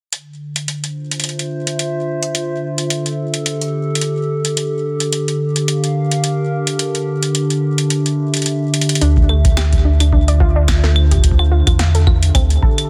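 A warbling, lo-fi pad sits up front in this glitchy, intricate IDM excerpt at 108 BPM in D minor. It holds dark, nostalgic sustained chords through Dm9, Fmaj7/D, Gm9/D and Gm6/D, coloured with chorus, built-in reverb and 12-bit sampler grit, over a swung analog drum machine of claves, metallic hats and a punchy snare. After a drum fill at 8.7 seconds, a round sine sub bass and a detuned, dusty sawtooth pluck arrive at 9.0 seconds, followed by a deep analog kick at 9.2 seconds. The pluck spins mellow, filter-swept arpeggios through chorus and delay, all within a dense, heavily limited mix with light reverb.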